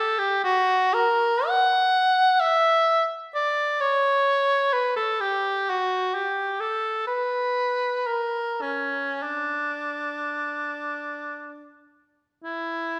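Freely paced in a rubato 3/4 that drifts between 37 and 67 BPM, this short classical passage, cut from a longer piece, features a lone cor anglais with a lonely, yearning character. The instrument sounds clear, with light vibrato and a classical manner, ranging from C#4 to F#5 as it carries the expressive line alone across all 13.0 seconds. It sits up front in the mix, yet a wet recital hall reverb with a 1.5-second decay places the listener further back in the room.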